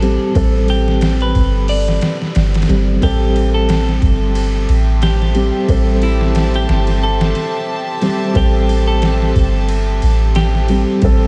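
Vinyl crackle and light reverb frame this dark, hypnotic trip hop excerpt, cut from a longer piece and resting on a single Am7 chord in A minor at 90 BPM in 4/4, with a gentle swing on the sixteenths and tuning at A4 = 441 Hz. A sampler-style drum kit, compressed and pitched down, brings a thumpy kick, a medium-tuned snare, hi-hat and ride in a small room ambience with a gritty, tape-warm character. Beneath it, a soft 808-style bass sits deep, round and up front, its sine tone striking quickly and then decaying. A felt-muted upright piano carries the accompaniment with a mellow, intimate sound and audible action noise, colored by harmonic tremolo, vintage 12-bit sampler grit and tape echo. A clean, picked electric guitar plays the melody in a shadowy tone through its own tape echo, and at 3.0 s a chamber violin section enters with sustained bowed chords, reedy gut-string tone and a smooth top in period style.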